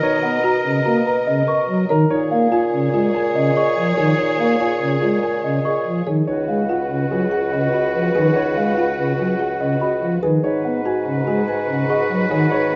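In a straight five-beat metre, this bright, hypnotic passage of minimalist classical pattern music, cut from a longer piece, sets a dark, short-sustained concert grand piano melody against a clear oboe second line with light vibrato, with lush, distant bowed strings holding chords, woody soft-mallet marimba and bell-like celesta arpeggios, and a roomy bassoon bass, while up-front flute-stop organ accompaniment joins alongside the celesta at 0.2 seconds, all over a progression of Bmaj7, A#m7, C#9sus4 and G#m7 in a moderate large-room reverb with a mellowed top end.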